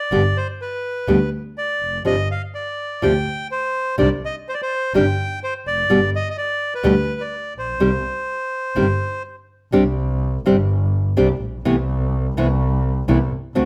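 Close, detailed microphones and light reverb frame this dramatic, tense tango excerpt at 125 BPM with a rubato feel, moving from C harmonic minor to C major at 9.7 s. A reedy bandoneon with a boxy small-room sound and slapback echo carries the melody until 9.2 s, over bright, fingerpicked classical nylon-string guitar accompaniment. A single bowed double bass, focused and clear with vibrato, holds the low end up front until the end at 13.7 s.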